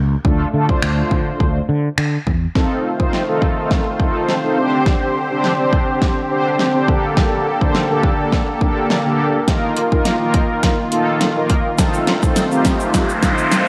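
Mellow, round synth brass with a detuned sawtooth edge, chorus and vibrato carries the accompaniment in this energetic, driving dance-pop excerpt at 104 BPM in 4/4, moving through Dm, F7, Csus2, Gmadd9/D and Ebsus2, while a growly fretless electric bass appears only in the first 2.5 seconds. Up front, an overdriven, layered pop drum kit with a punchy kick, fat snare, metallic hats and finger snaps launches a build-up with a drum fill from 2.6 seconds, as a lush, nasal unison pad with chorus enters. The brass, bass and pad all carry sidechain pumping; a grainy tube shaker sits in the background near the close, an electronic riser climbs in at 12.7 seconds, and moderate echo chamber reverb gives the mix a digital ambience.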